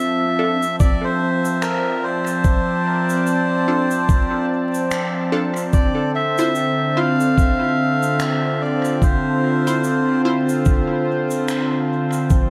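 A reedy, breathy melodica carries the melody up front in this deep, hazy ambient dub excerpt, its notes repeating in dub echo until it stops at 10.2 seconds. Beneath it, a smooth, warbling analog pad with chorus holds sustained chords, moving from F6 to Dm7 at 5.7 seconds. A muffled, thumpy electronic kick, pitched down and compressed, sits prominently in the swung 4/4 groove. Acoustic cabasa and finger snaps with a natural hall sound add faint, echoing detail. Muted, detuned chord stabs with a filter pluck, phaser and dub echo flicker in the background, while a very quiet bubbling texture of resonant, random filter steps hovers underneath. Light reverb, an echo-heavy mix and vinyl crackle give the recording its hazy character.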